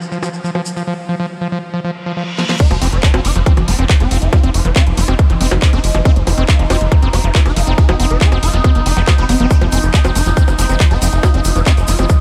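A tight, up-front electronic kick lands at 2.6 seconds with the drop, driving this hypnotic, alien psychedelic trance excerpt at 139 BPM in straight 4/4, joined by a round, deep analog bass and a bright, swarming rave lead with chorus, phaser, tape echo and sidechain pumping. A squelchy, gritty acid bass riff with distortion and analog delay runs almost throughout, over a garage kit of cracking snare, hi-hat, handclaps, bongos and crash cymbal, while a grainy tube shaker sits in the background and a very quiet reverse cymbal and impact bridge the filter-swept opening into the drop. The harmony shifts from Ebsus2 to F5 at the drop, and from 4.2 seconds a resonant drone with moving overtones sustains chords under built-in reverb and chorus.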